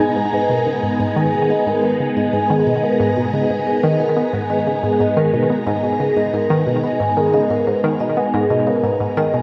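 Hypnotic and expansive, this 9.4-second cut from a longer piece of ambient, sequencer-driven space music moves at 90 BPM in a straight 4/4, resting on a single G#madd9 chord in G# minor. A round, detuned analog pluck built from sawtooth and square waves with a noise layer carries the riff up front, its fast attack and short decay softened by chorus and delay, and a filter sweep shaping its tone. Above it, a vibraphone played with soft mallets and its motor off spins mellow, metallic, ringing arpeggios through delay. A bright, vintage string machine sits up front with sustained chords, swirling and warbling under ensemble chorus and phaser, with a slow attack and long release. In the background, an airy, breathy, wind-like tuned noise texture holds a single high G#5 in its own reverb. All four parts play throughout, and the whole mix is bathed in a wet echo chamber with a 2.5-second decay.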